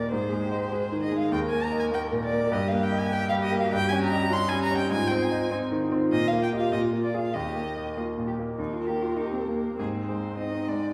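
Quick, spirited and graceful classical-period piano trio music in Eb major at 100 BPM in 2/4, cut from a longer piece, where a rich, expressive violin sings the melody with vibrato and portamento up front, a distant cello adds a bowed second line with its own vibrato and sliding touches, and a bright, brilliant grand piano carries the accompaniment with long sustain and audible action noise, all heard from further back in a reverberant recital hall.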